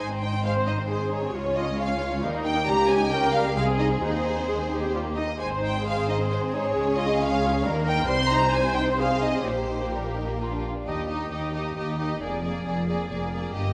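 A focused, up-front first violin section carries the melody with vibrato and a smooth top, leading this lively, graceful classical-period movement for string orchestra at a quick 134 BPM in 3/4. A second violin section with light vibrato plays an even second line beneath it, and the lush viola section joins at 0.4 s with smooth accompaniment. The cellos sit in the background with expressive bowing, sharing the bass with a rich double bass section. The harmony starts in Ab major and moves to Eb major from 8.1 s, and a new section begins at 10.9 s that closes on a Bb7 chord. A moderate scoring-stage reverb gives the ensemble a sense of space, and the sound has a gentle top end in this cut from a longer piece.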